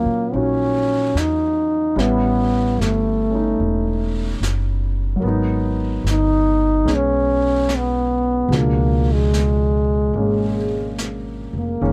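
A mellow, up-front trombone carries a melancholic, intimate jazz melody with scooped notes at a slow 73 BPM swing, over a warm, deep-bassed grand piano, a woody, growly pizzicato upright bass and a distant, roomy brush kit that enters at 0.3 seconds, all under light reverb in this excerpt from a longer piece moving through Ebm9, A9, Abm7 and Db7b9.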